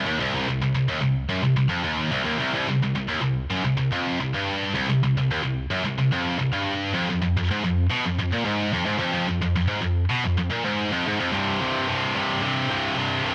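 A lone heavy high-gain electric guitar, bright, picked and double-tracked up front in a dry home cassette recording with tape-worn distortion, drives this relentless, dark metal fragment cut from a longer piece, moving from C minor to F minor at 6.9 seconds before settling on a C power chord at 11.3 seconds.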